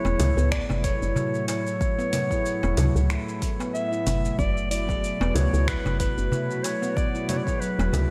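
A dreamy, reverb-soaked mix in a lush hall carries this mystical, meditative organic downtempo excerpt at 93 BPM in F# minor, resting on an F#m9 chord, where a mellow, subtoned clarinet with light vibrato and scooped notes sings the melody over a woody, round FM bass up front, ringing stainless-steel handpan arpeggios, a bell-like tine electric piano and an airy, breathy pad in the background, a crisp metal-shell darbuka, and a tape-warm deep house kit of congas, finger snaps, hi-hat and shaker joined by a deep electronic kick from 0.5 to 7.6 seconds, with sidechain pumping on the bass, pad and piano.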